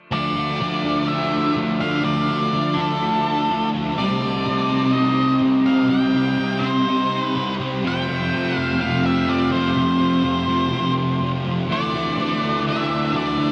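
An up-front octave-fuzz lead guitar carries the melody over a hazy, dreamy rock passage at 124 BPM, with a dark, thick fuzz guitar riff and a biting overdriven guitar riff, touched by reverse reverb, while a bright, twangy twelve-string electric guitar plays chorused arpeggios in the background, all moving through Dmadd9, Cm, F and Dsus2 in a mix soaked in huge ambient reverb.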